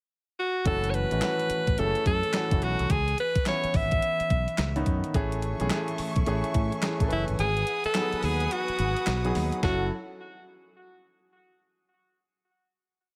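A hard-swung, clean 12-bit drum machine beat at 107 BPM, with thumpy kick, hi-hat and snare layered with handclaps, drives this punchy, confident new jack swing R&B piece in F# dorian: a growly fingered electric bass bounces through a synth-funk line with muted ghost notes and chromatic approach notes, a polished grand piano adds syncopated chord stabs with grace notes, an edgy alto saxophone sits up front with scooped, motif-based call phrases carried on tape echo, a lush bowed string section brings a sustained pad at 5.1 seconds, and the kick falls silent from 7.4 seconds before a final chord rings out in a small room.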